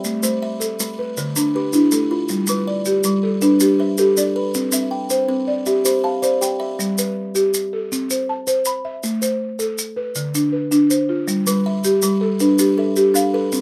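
Southern African traditional music in an mbira-style interlocking cycle, this hypnotic, rippling passage moves at 107 BPM in a straight 12/8, centred in G mixolydian. A buzzing marimba struck with soft mallets carries arpeggios throughout, its hardwood bars sounding woody, round and mellow, set up front in a boxy small room. A buzzing kalimba adds its own bright, ringing arpeggios with a thumbnail pluck and a hollow-box body, close-miked and full; it drops out at 7.2 seconds and returns at 11.5 seconds. Grainy, compressed maracas add a mellow, saturated shimmer beneath the plucked and struck tones. The harmony circles through Am, Dm, G and C, with the second half of the cycle shifting its starting point to G at 6.8 seconds, all under a light reverb in this short section cut from a longer piece.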